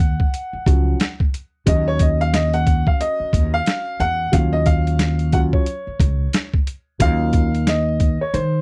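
Jazz-hop with a nocturnal, smoky mood, this short excerpt from a longer piece rides a swung 90 BPM groove in Eb minor over a single Ebm9 chord. A dark, mellow, boxy upright piano with long sustain takes the solo for the full 8.6 seconds, backed by a growly, woody pizzicato upright bass on steel strings and a gritty, compressed, pitched-down boom bap sampler-style kit with a thumpy kick, medium-tuned snare and hi-hat, all sitting up front in a dry, close 1970s-style studio sound.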